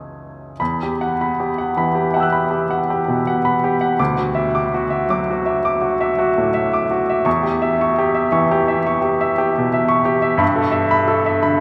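A clear, intimate baby grand piano sits up front, its action noise audible and its long sustain blooming into a cathedral reverb that lingers for seconds after each chord. This wistful, nocturnal impressionist solo piece moves with a slow, rubato sway in 9/8, drifting through added-note harmonies such as Emadd9, Dadd9, Em6 and G69 across a range from deep bass to high treble. Cut from a longer work, the passage runs for 11.6 seconds.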